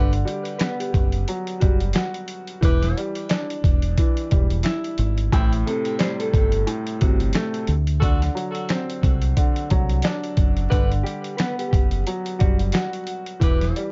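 A gritty, pitched-down boom-bap drum kit with a thumpy kick anchors this reflective, swung hip-hop cut at 89 BPM alongside a round, dark fingered electric bass, a woody upright piano, soft-attack saxophone stabs with tape echo, a clean, mellow electric guitar melody in spring reverb and a very quiet finger snap, all moving through Gmaj7, Em7, Am7 and D7 under dark, vinyl-crackled production.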